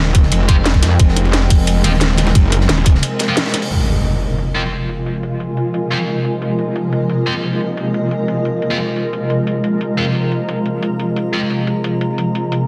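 A dense, heavily limited modern master in a moderate digital room carries this dark, technical drum and bass fragment at 177 BPM in F minor, tuned to A4 = 437 Hz, with a futuristic, mechanical mood. It opens on a drop where an up-front electronic kick drum and a metallic, aggressive FM wobble bass, distorted, chorused and tube-saturated with sidechain pumping, drive hard until the bass falls away at 3.0 s. A second distorted, chorused wobble bass briefly sounds a Gb1 at 2.4 s. Around them, a drum and bass kit with a cracking snare and metallic hats runs through the whole fragment, while a crunchy breakbeat kit sits in the background, gritty and saturated with dark cymbals, until 3.7 s. A swarming, detuned drone holds sustained F minor chords and a blurred, cloudy granular pad floats above, both pumping with the sidechain. A bright, double-tracked distorted electric guitar adds picked stabs through dub echo. 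After a short break and a band accent, an electronic impact lands at 3.7 s, and the drone then moves under a long filter sweep to the close.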